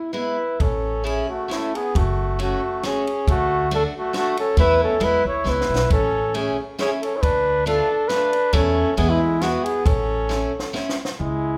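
A mellow flugelhorn with light vibrato and a smooth top carries the melody up front in this jolly, bouncy alpine dance-band number in A major, played at 136 BPM in 3/4 with a lightly swung, rubato feel. Beneath it, a distant, roomy trumpet plays a classical-style second line, and a picked steel-string acoustic guitar with an auditorium sound supplies warm accompaniment. A woody, thumpy pizzicato upright bass on gut strings joins at 0.6 s alongside a dry, punchy compact cocktail drum kit with dark cymbals and a high-tuned snare; the drums add fills at 5.5 s and 10.3 s, and light reverb frames this short excerpt from a longer piece.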